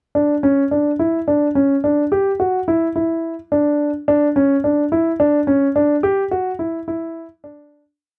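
This progressive instrumental piece is intricate and tense, moving in an odd 7/8 metre at 214 BPM (eighths) with a straight feel in E dorian. A solo grand piano plays an ostinato between C#4 and G4, its warm, intimate tone marked by short sustain and audible action noise, sitting up front from 0.1 to 7.8 seconds. The dry, close 1970s-style studio sound has little reverb, and the piece fades out from 6.0 to 8.0 seconds.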